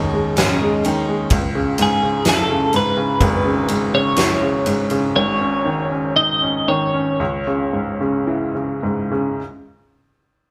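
Longing and melancholic, this short cut from a longer pop ballad moves in an unhurried 4/4 that gradually slows from 1.3 seconds onward. A bright, twangy twelve-string electric guitar carries the melody with a compressed, clean tone and a shimmering tremolo. Beneath it, a clear upright piano sits up front with a woody, intimate sound, its action noise audible as it provides the accompaniment. A full-bodied, picked steel-string acoustic guitar plays arpeggios only in the opening moments, its finger squeak catching the ear. A huge arena drum kit enters at 0.4 seconds with a punchy kick, fat snare and ride cymbal, then drops out at 5.1 seconds. The band plays live together in a stone room with moderate reverb, while the harmony rests between G#sus4 and C#m.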